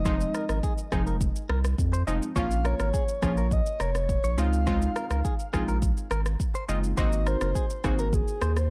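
A soft, breathy, flute-like synth lead with vibrato opens this short cut from a longer afrobeats piece, sounding alongside a thick, saturated sub bass from the very start at 0.0 seconds. The mood is sultry and mellow, moving at 104 BPM in a straight 4/4 in Bb minor, with chords cycling through Fm7, Bbm, Dbmaj7 and Ab7. Almost at once a deep house drum kit arrives with a deep kick, rim click and shaker, sitting up front with the bass. A crystalline, detuned wavetable pluck with chorus and a filter sweep supplies the accompaniment until 8.0 seconds, while a clean, twangy electric guitar, recorded direct and compressed, plays a picked riff a little lower in the mix. The lead carries chorus and delay, and the whole is set in a digital ambience with a dark, warm production.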